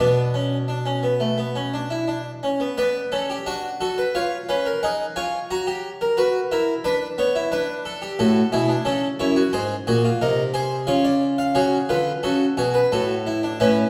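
In a straight 4/4 at 88 BPM, this stately, elegant excerpt of a baroque-style four-part fugue features a solo French-style harpsichord, plucked and full on two sets of strings and placed up front yet heard from further back in a recital hall with a wet reverb, moving from B minor through C#7, F#, F#m/A, G# and C# to A across F#2 to B5 within its 13.9 seconds.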